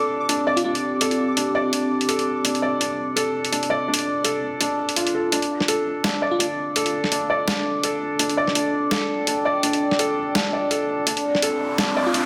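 A spacious, heavy half-time drum and bass excerpt at 167 BPM, bathed in a moderate echo chamber reverb, opens on a dark, detuned analog pad with chorus and phaser and a soft, felt-muted upright piano playing intimate arpeggios up front, its action noise audible through a low-pass filter and tape echo. A gritty, pitched-down boom bap sampler-style kit with a compressed snare and hi-hat sits close, while a bright pulsing gated texture hovers in the background until 5.3 s. As the build-up gathers from there, brief sparkling touches of a bell-like FM electric piano return with tape echo, and an electronic riser enters at 11.5 s.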